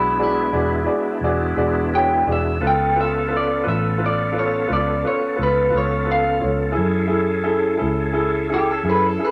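Swaggering and gritty, this slow 12/8 blues passage sets a slightly broken-up, up-front electric guitar melody over clear, woody upright piano with audible action noise, a reedy tonewheel organ holding sustained chords through a slow rotary speaker with chorus vibrato and key click, and a round, punchy foam-muted bass, all sitting in a moderate large studio reverb as the chords move from E7 to C#aug7 at 2.6 seconds and F#m7 at 6.8 seconds.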